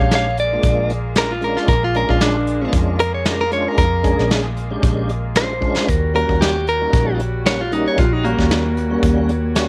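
A clean, direct-recorded electric guitar leads this rollicking, gritty soul blues excerpt, taking a picked, compressed solo that sits up front with a scooped tone across the full 9.7 seconds. Underneath, a tonewheel organ fills in the accompaniment with a full, lightly overdriven sound, colored by chorus vibrato and a slow rotary speaker. A mellow horn section holds sustained chords in the background, its soft attack and light vibrato giving a vintage, jazz-style ensemble texture. The vintage muted fingered bass is dark and round, while a brush drum kit with a punchy kick, medium-tuned snare, hi-hat and a rolled-off top drives the straight-eighth groove at 114 BPM in 4/4, with a drum fill at 5.6 seconds. The harmony moves from Bb7#9 to Eb7#9 at 5.9 seconds, all set in a light reverb.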